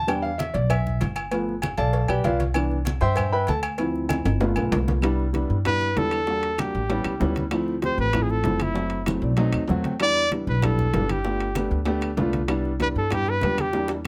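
Sunny and danceable, this Afro-Cuban jazz fragment opens with a short-sustained grand piano solo passage over pizzicato steel-string upright bass, backed by ringing metal-shell agogo bells and timbales, woody claves, low-tuned thick-skinned congas, and compressed, saturated cowbell and bongos struck with hard hands, before a breathy trumpet with light vibrato and a smooth top takes the up-front melody from 5.7 seconds, until a drum fill at 13.7 seconds rounds off this close, detailed recording with little reverb.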